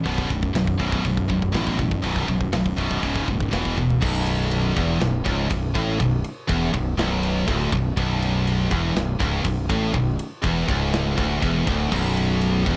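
A bright, up-front high-gain guitar drives this heavy, aggressive metal excerpt at 121 BPM in straight 4/4, joined by a second scooped, distorted guitar riffing in the same low register, over a growly, fuzz-overdriven fingered bass. A tight acoustic kit with bright cymbals, a medium-tuned snare and a tight kick plays from 0.1 seconds, and a fill at 3.8 seconds leads into a half-time passage settling in B minor at 4.0 seconds after the B5, C#5 and E5 power chords. The dark production sits in studio reverb.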